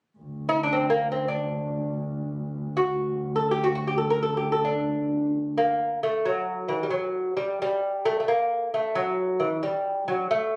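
A bright, delicate lute sits up front in this short cut from a longer Persian modal ensemble piece, fingerpicked on gut double strings with some octave-doubled courses, its melody ranging from a quarter-tone-inflected Eb3 up to Bb4 and carrying a plate reverb. Played in free time in dastgah homayun on D, the music feels passionate and festive. Beneath it, a single bowed double bass holds a dark, smooth drone on D2 with vibrato from 0.2 to 5.6 seconds, sitting well below the lute in level. Once the bass stops, the lute carries the second section by itself until 10.6 seconds. The sound has the moderate reverb of a studio room, captured on a phone with audible ambience and compression.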